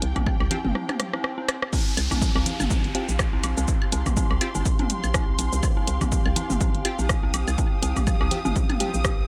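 A dry excerpt of cool, sparse minimal techno in C minor at 123 BPM, with a swung 16th-note feel. An up-front electronic kick and an analog drum machine playing cabasa, crash, hi-hat and rim click drive the groove, joined by overdriven electronic toms, congas and woodblock with dub echo. A hollow, bouncy FM bass, a dark, woody string section and an eerie, warbling detuned bell with chorus and digital delay all pump with the sidechain, while crisp wavetable chord stabs with a moving filter sweep echo. After a break and drum fill, the drop lands at 1.7 seconds, with electronic swells, a downlifter and zaps heard between 1.1 and 5.6 seconds, and a very quiet, flickering grainy texture entering at 2.6 seconds.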